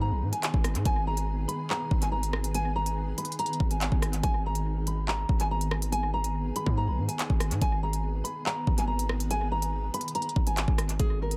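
A half-time drill groove at 142 BPM in 4/4 drives this dark, menacing hip hop excerpt, with the electronic drill drum kit entering at 0.3 s with a knocking kick, crisp hi-hats, handclaps and rim clicks, all touched by tape echo and sitting up front. Beneath it, a hard-hitting 808-style bass runs from G#1 to G#2 with a punchy, saturated sine tone, a noise layer, a fast attack and a decaying tail. A thumb-plucked nylon-string guitar carries the melody between G#4 and B5, its classical, acoustic tone bearing audible finger squeak and a trail of tape echo. Behind the guitar, a granular cloud pad holds sustained chords with a blurred, detuned, slowly evolving haze, slow attack and long release, bathed in its own built-in reverb until it ends at 11.0 s. The whole passage stays on a single G# minor chord, and the echo-heavy mix carries only light reverb.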